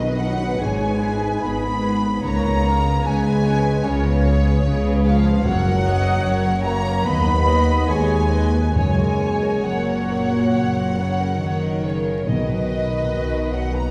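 A lyrical, rubato slow romantic orchestral passage, cut from a longer piece, opens with a background chamber violin section playing the melody sul tasto with vibrato, while a mellow, airy flute section and an intimate studio violin section share a second line over gentle sul tasto violas, clear sustained French horn chords, very quiet ringing harp arpeggios, and a rich cello and double bass foundation with the basses up front; timpani with medium mallets on calf heads sound briefly at the start and return from 5.4 seconds, the whole orchestra heard from further back on a reverberant scoring stage with a touch of vinyl crackle.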